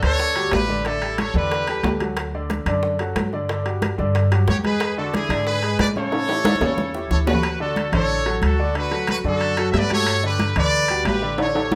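A brilliant, tight trumpet section sits up front with a pop-style vibrato, stating the melody in a brief opening phrase before returning at 4.5 seconds to carry the line through to the close. This sunny, danceable salsa excerpt, cut from a longer piece, moves at a brisk straight 4/4 over a progression of lush major-ninth and dominant chords. A clear grand piano with long sustain provides present accompaniment throughout, while a woody, growly upright bass, played pizzicato on steel strings, anchors the low end with a thumpy tone. The percussion has ringing metal-shell timbales that sound compressed and saturated, bright thin-skinned congas played with soft hands in the background, and tight, high-tuned bongos that drop out at 7.3 seconds. Drum fills mark the turn at 6.1 seconds and the final moments, and the whole band sits in a moderate large-studio reverb.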